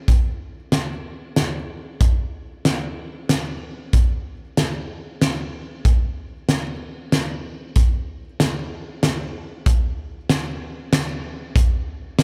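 Rock at 94 BPM in 3/4 with a straight feel, this short excerpt from a longer piece carries a euphoric, hopeful mood. A loose indie acoustic drum kit plays alone from 0.1 s to 12.2 s, sitting up front with a punchy kick, a fat snare and hi-hat in a pumping studio room. Light reverb adds air, and the groove moves into a new section at 9.7 s.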